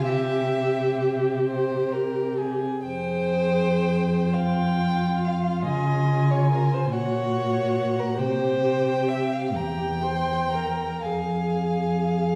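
Classical slow romantic string quartet movement in F minor, elegiac and melancholic, unfolding with rubato in 6/8 at about 38-48 BPM, where a rich, smooth, even first violin carries the melody from 0.1 s over a warm, up-front second violin, a plush viola and a warm, up-front cello bass, the lower three voices sliding expressively with portamento, the second violin and viola with soft attacks, all four bowed with vibrato, as the harmony moves from C through Fm, Db and Gb/Bb to C7 before settling on Fm, heard from further back in a reverberant recital hall.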